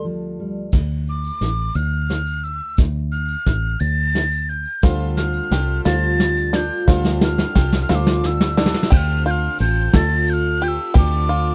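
A breathy, mellow whistle with vibrato carries a yearning D minor melody over dark, full-bodied fingerpicked steel-string guitar in this slow 6/8 indie folk excerpt at 59 BPM; soft brushed drums, a jingly tambourine in the background and a foam-muted fingered electric bass arrive at 0.7 seconds, and the guitar falls away at 2.8 seconds. The stirring arrangement builds through a drum fill, and at 4.8 seconds a boxy, shimmering twelve-string guitar, a twangy banjo playing arpeggios and a very quiet, woody upright piano join, the piano stopping at 8.9 seconds as the harmony settles on Dm7. The drums sit up front with a punchy kick and a rolled-off top, and the recording carries little reverb.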